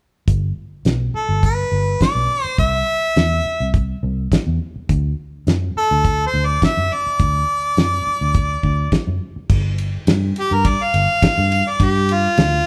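A lightly reverberant, live-in-one-room sound frames this swaggering, laid-back slice of straight-eighth soul blues, cut from a longer piece. A damped 70s drum kit sits up front with a dry, fat snare, tight kick and dark cymbals across crash, hi-hat and ride, while a vintage muted fingered electric bass, amped, round and punchy, anchors the low end from 0.3 seconds. A bright, overdriven harmonica enters at 1.2 seconds, carrying the melody with light vibrato and scooped notes in a pop-leaning style. The harmony moves from G through C to D before settling on a bare G7 at 9.5 seconds, where the harmonica takes a solo to the close.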